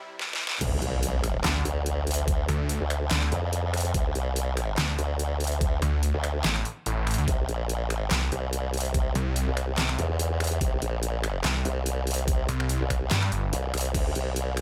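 Dry and high-passed, this heavy, chaotic half-time wobble dubstep excerpt opens on a brief lush supersaw pad pumping under sidechain and a drum fill, then drops at 0.6 s with a background impact, a knocking overdriven kick, a deep snare with bright hats, crash, finger snaps and handclaps, and an up-front chorused formant-sweep wobble bass, joined at 1.4 s by a snarling, growling distorted saw bass, while the kick briefly drops out at 13.1 s.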